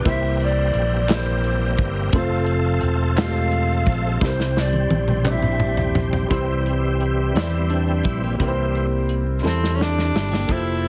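In a straight 6/8 at 58 BPM, this slow, soulful and jubilant gospel piece sets a round, punchy fingered electric bass and an up-front acoustic drum kit beneath a woody upright piano and a shouting tonewheel organ with key click, overdrive, chorus vibrato and a slow rotary speaker, while an airy bamboo pan flute with tape echo carries the melody until 6.1 seconds and crisp group handclaps join briefly, then the organ takes a solo from 6.3 seconds as a clean electric guitar adds a second line in the background and a breathy, raspy tenor saxophone enters at 9.5 seconds, all within a heavily compressed, radio-like sound.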